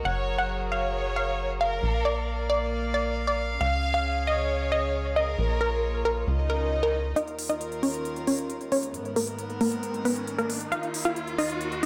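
Uplifting trance with a soaring, bittersweet mood: a detuned, lush unison pluck carries the melody through filter sweeps over sustained chords from a reedy, gut-toned chamber string section, while a focused violin section adds a second line until 6.0 s and a punchy, saturated sequencer bass drives until 7.1 s, after which crisp, overdriven electronic hi-hats and a riser build up in a moderate digital room.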